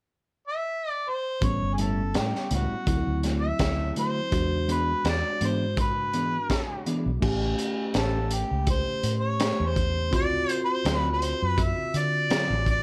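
Straight-eighth soul blues with a swaggering, laid-back feel, cut from a longer piece and carrying a light shuffle on the sixteenths. An overdriven harmonica opens alone at 0.5 seconds, mellow yet distant and roomy, sitting up front as the solo voice. At 1.4 seconds the band arrives: a crunchy breakbeat kit with dark cymbals, a high-tuned snare and a punchy kick, saturated and gritty with a rolled-off top. Beneath it, a vintage foam-muted fingered bass adds round, amped low end, and a clean tine electric piano fills in warm, direct chords. From 1.8 seconds a dark, fingered electric guitar drops in stabs bathed in spring reverb, while the harmony moves from A7, D7 and E7 to sharper A7#9 and D7#9 colours in the closing stretch.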